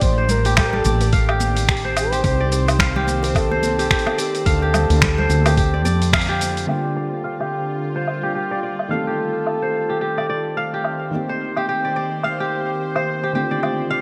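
Organic downtempo in G minor at 108 BPM with a loose 16th-note swing, this meditative, earthy excerpt pairs a crisp, ringing fingerpicked kora and a breathy flute-like synth lead with chorus and delay over a tense bowed-like drone, a round, punchy fretless bass, a gritty, thumpy electronic kick, a dusty sampler-style kit of snaps, hi-hat, shaker and woodblock, and soft-handed congas and bongos in the background. A band accent lands at 6.1 s, and a felt-muted upright piano with audible action noise enters at 6.7 s as a filter sweep passes over the kora, all set in a lush hall reverb with bright 1980s-style digital production.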